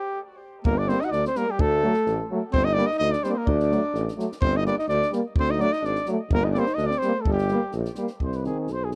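A steady, straight 2/4 pulse carries this bittersweet, virtuosic Balkan brass band fragment. A mellow trumpet plays alone at first, its tape-echoed melody up front, and from 0.6 seconds a vibrato-rich alto saxophone sings a second line in the background. A warm, soft-attack tuba holds the bass both up front and distant in its roomy tone, while a bright trombone and a gently vibrato-tinged French horn fill out the accompaniment over a dry, compact cocktail kit with a high-tuned snare and tight kick, all in a close, small-room 1970s-style studio sound.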